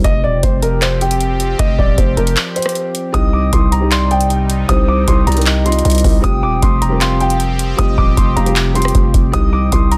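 A half-time 4/4 groove at 155 BPM drives this melancholic, hard-hitting C minor trap piece, where a booming analog drum machine with deep kick, metallic hats, handclaps and rim clicks sits up front beside a growling, buzzy 808-style bass. A dark, intimate baby grand piano carries the delay-touched melody over a sweeping, detuned sawtooth pad as the harmony moves between Fsus2 and Cm. After the opening break, a felt-muted upright piano, heard only for an instant at the very start, returns at 3.1 s with soft accompaniment, alongside a hollow, woody clarinet-like synth lead that drifts in the background with chorus, phaser and vibrato until 9.7 s. The mix sits in light reverb within a dense, heavily limited modern master.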